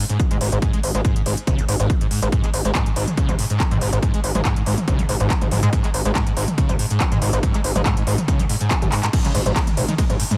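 Bathed in light reverb, this dark, hypnotic excerpt of driving peak-time techno at 141 BPM sets a squelchy, resonant sawtooth acid line, distorted and chorused with a filter sweep, analog delay and sidechain pumping, over a gritty, saturated synth bass with oscillator sync, ring modulation and its own pumping, a heavy, overdriven, up-front electronic kick, and a layered electronic drum kit of smooth hats, handclaps, ride, crash and toms, with a drum fill at 8.9 seconds leading into a drop at 9.1 seconds.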